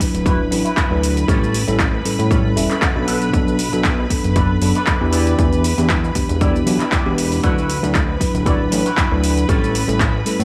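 Groovy and sunny, this nu-disco excerpt rides a lightly swung 117 BPM in D major, with a punchy, overdriven electronic kick and an overdriven house kit of handclaps, hi-hat and shaker, both re-recorded in a large room, under a fat, detuned analog bass that enters at 0.1 seconds. A bell-like tine electric piano plays filtered, delayed accompaniment while a dark, fingered envelope-filter guitar carries the riff through chorus and delay, and a biting, earthy string section holds sustained chords with light vibrato, 12-bit grit and sidechain pumping. A clean electric guitar fill appears from 2.3 to 3.3 seconds as the chords move from D69 through A7, Bm7 and Em7 in a small, dry room.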